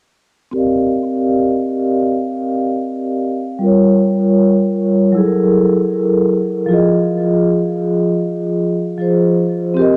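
A hazy, cassette-tape sound with an echo-heavy mix, light reverb and the ambience of a small room frames this short cut from a longer hip hop piece. A solo vibraphone, struck with medium mallets, plays from 0.5 to 10.0 seconds, spanning F3 to F5 in a melancholic mood at a relaxed 78 BPM in 4/4 with a swung sixteenth-note feel. Close-miked, dry and up front, its metallic, ringing tone carries a slow motor vibrato, and its own signal passes through cassette tape, a low-pass filter and analog delay. A filter sweep runs across the vibraphone for the full passage. The harmony moves from Cm11 to Gm7b5 at 3.6 seconds, then through F#9 before settling on Fm7.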